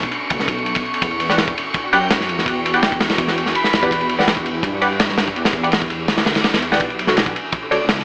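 Raw and nostalgic, this drum and bass excerpt in a jungle vein runs at 166 BPM in a straight 4/4, moving from Bm9 to Em9 and back to Bm9 near 6.8 seconds. A crunchy breakbeat kit sits up front with a tight kick, medium-tuned snare and dark ride cymbal, its saturated, gritty tone rolled off at the top, while a deep, rumbling detuned saw bass with tube saturation beats underneath. A very quiet, ethereal pad holds sustained chords with a slow attack and ensemble chorus, and a breathy, wind-like tuned noise texture drifts in the background until about 6.8 seconds. From 1.3 seconds a muted, filtered dub chord stab with a plucky, short decay cuts through with phaser and dub echo. A dreamy lead with vibrato, chorus, phaser, vintage 12-bit sampler grit and dub echo floats in the background between 1.9 and 4.1 seconds, returning briefly near 7.7 seconds, and the whole mix carries a moderate echo chamber reverb and a thin AM radio character.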